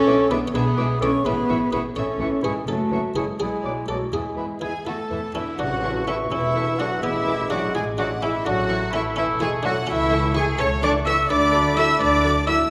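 Drenched in a scoring-stage reverb, this playful, whimsical film cue in A major moves at 84 BPM in 6/8 with a magical, quirky air. A muted, lute-like buff-stop harpsichord and a distant, lush symphonic violin section carry the melody, while a hollow concert flute, a focused chamber violin section, a warm oboe with vibrato and a classical-style clarinet weave second lines. A vintage bassoon and a very quiet viola section fill in the accompaniment, a tight, mellow French horn section holds sustained chords, and rich cellos and soft-attack double basses anchor the bass. A bright cymbal swell with tam-tam colours the passage from 2.7 to 7.5 seconds, and within it a full-ensemble accent at 5.6 seconds opens the second section.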